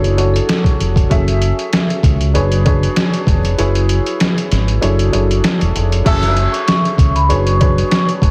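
Dark and moody, this boom-bap hip-hop groove moves at 97 BPM in F# minor with a light swing, cut from a longer piece. A sampler-style drum kit sits up front, compressed, pitched down and overdriven, with a thumpy kick, a medium-tuned snare, hi-hat and crash cymbal that sound re-recorded in a small room. The kick drops out from 3.6 to 6.1 seconds. A deep, round dub bass, fingered and up front, underpins lush chords such as Dmaj9#11/F#, F#m9 and Bm69. A dark upright piano plays the accompaniment throughout, woody and slightly detuned, with audible action noise, long sustain and a worn cassette-tape colour. A soft-mallet vibraphone carries the melody with a metallic ring, slow motor vibrato and delay, heard briefly at the start and again from 6.1 seconds, when a clear, punchy horn section adds a short stab in the background. The whole sits in small-room ambience with a heavily compressed radio sound and vinyl crackle.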